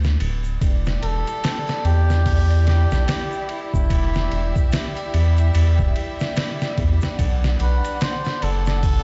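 A dark, muffled mix heard as if through a big sound system in a bare stone room, its top end dulled, opens this brooding trip hop excerpt at a slow 73 BPM with a swung 16th-note feel in E minor. A round, deep analog bass and a thumpy, pitched-down sampler-style drum kit with compressed, tape-softened hits sit up front, while a close, dry tube shaker and triangle stay in the background. At 0.6 seconds a smooth, lightly vibrato-tinged violin section settles onto sustained chords moving from Em7 to Bm. From 1.0 seconds a veiled, distant cup-muted trumpet carries the melody, roughened by 12-bit sampler grit and tape echo.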